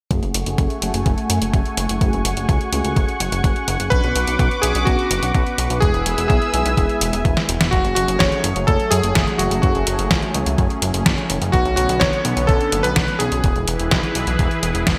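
Nostalgic and danceable, this italo disco fragment rides a straight 4/4 pulse. A lush, airy unison pad holds sustained chords throughout, colored by chorus and phaser, while a glossy, nasal chorused synth bass sits up front. An overdriven electronic kick thumps beneath a detuned 8-bit digital drum machine supplying hi-hat and snare, whose gated reverb adds punch. Fat, detuned analog synth brass stabs with vibrato, chorus and delay hover in the background until a short drum fill leads into the second section at 7.7 seconds, where the brass drops away. A clear, vintage electric grand piano enters at 3.9 seconds with a delayed melody over chords moving from F#madd9 to Bmadd9 and E, all within a bright 1980s-style digital production and a moderate plate reverb.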